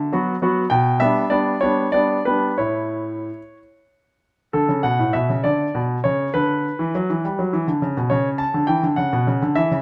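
Close, detailed microphones and light reverb give this brief cut from a classical-period piano sonatina a clear, natural sound, with the solo grand piano placed up front. In D major and 6/8 at roughly 61-69 dotted-quarter beats per minute, the playing moves with an elegant yet dramatic rubato across a range from A2 to A5, tuned to A4 = 439 Hz. The harmony passes from B minor over D through G and A before a second phrase begins at 4.5 seconds and settles on a rootless Bm11 at 8.1 seconds.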